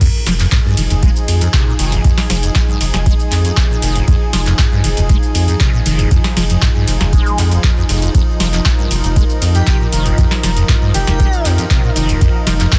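A straight 4/4 acid house groove at 118 BPM is driven by a deep, tape-warm electronic kick and a booming analog drum machine with crisp snare, handclaps, metallic hats, ride, crash and shaker, while a squelchy, resonant sawtooth acid bass riff with phaser and tube saturation and a round, wave-folded analog bass pulse under a Fm7 drop. A lush, detuned unison pad holds sustained chords with chorus and sidechain pumping, and from 9.5 s to 11.5 s an airy, dreamy lead with vibrato and digital delay sustains a single G4. The playful, raw excerpt sits dry and dense in a heavily limited modern master.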